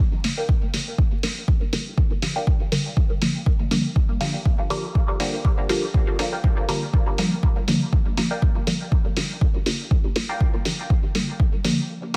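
Meditative and hazy, this dub techno excerpt moves at 121 BPM in G minor with a light swing, resting on a single Gm7 chord. A deep, layered kick sits up front beside a muffled, pitched-down hi-hat, while a sawtooth chord stab with a filter pluck pumps under the sidechain through phaser, 12-bit sampler grit and dub echo. A softer, detuned stab riff with a sub octave, lush chorus and cassette tape colour enters at 0.4 seconds and stops at 10.4 seconds, before a break at 11.9 seconds in a dense, heavily limited master with vinyl crackle and light digital ambience.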